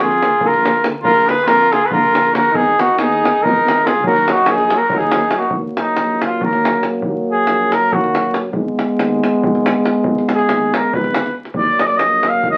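Driving 7/8 at 280 BPM in eighths, this fiery, bittersweet Balkan brass band piece in Eb harmonic minor, cut from a longer performance, rides on a tight, compressed and saturated davul. A distant, roomy flugelhorn leads the melody up front, joined by a clear trumpet with light vibrato in the background until 5.5 s, when the flugelhorn takes a solo through to 12.6 s. Beneath them, a close-miked, soft-attacked trombone and a warm euphonium supply accompaniment over a mellow, smooth-topped tuba bass, all heard through wet studio reverb and the crackle of a very old 78 rpm record.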